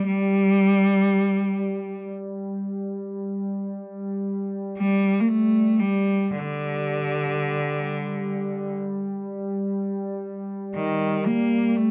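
In free time, this mournful Caucasian lament unfolds as a short excerpt full of longing, led by a single bowed cello with a rich, focused tone, vibrato and a smooth top, singing a low melody up front. Beneath it, a warbly, lo-fi tape-like pad holds a sustained drone, its detuned sawtooth and triangle tones softened by chorus and built-in reverb into a mellow, nostalgic haze. The music moves into a new passage at 3.2 seconds, and the close, dry 1970s-style studio sound keeps the cello intimate and present.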